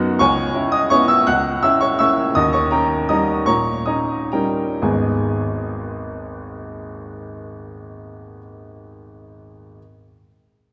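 Classical piano waltz in 3/4, wistful and bittersweet, played with a free, rubato feel in a short passage cut from a longer piece. A clear upright piano plays solo across the full 9.8 seconds, its tone woody, smooth and vintage, sitting up front while spanning a broad register from deep bass to high treble. The harmony moves from C#m7 through A#dim/C# and D#7 before arriving on G#m at 4.8 seconds, where a second section begins. The tempo gives way noticeably between 1.8 and 4.8 seconds, lending the opening phrase a lingering, reflective quality. A wet scoring-stage reverb places the listener further back in the room, surrounding the instrument with a long, spacious tail.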